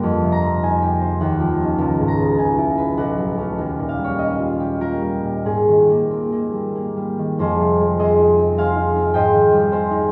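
Drenched in a long cathedral reverb and heard from further back in the room, this short cut from a longer classical piece features a solo concert harp, its bright, thumb-plucked tone still ringing up front. In a rubato 3/4 at roughly 91-107 BPM and tuned to A4 = 445 Hz, the harp spans B1 to Bb5, drifting through lush ninth chords such as Fm9, Ebm9 and Abmaj9. At 7.4 s it settles into a new section that moves from Fm7 to Abmaj7, keeping a dreamy, peaceful mood.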